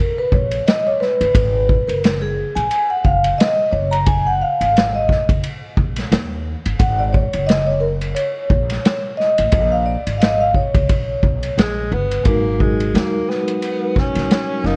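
Soft-mallet vibraphone leads this mellow, cool jazz-hop cut from a longer piece, its ringing, airy tone with medium motor vibrato carrying a solo over Bmaj9, F#maj13 and A#m7 colours in G# dorian at a swung 88 BPM. From 0.3 seconds, woody, growly pizzicato upright bass and a punchy vintage kit with dark cymbals, a rolled-off top and 12-bit sampler grit settle into the groove, all under light small-room reverb and a worn, warbling cassette-tape pitch drift. At 11.6 seconds, a breathy, dark tenor saxophone with subtone and scooped notes enters, carrying the melody into the closing section that begins on G#m9 at 12.3 seconds.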